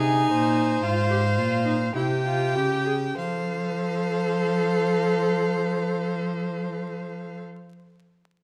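A string quartet opens together on a solemn, driving baroque-style fugue in triple time, with a rich, smooth violin carrying the melody above a second violin's warm, expressive line and its gliding portamento. A clear, focused viola sits more distant in the accompaniment while an up-front cello anchors the bass with soft attacks and slides of its own, all four players bowing with vibrato as the pulse slows through the first 3.2 seconds before the passage shifts to a new section. Close, detailed microphones catch the players inside a moderate recital hall reverb, with vinyl crackle running under this brief cut from a longer piece.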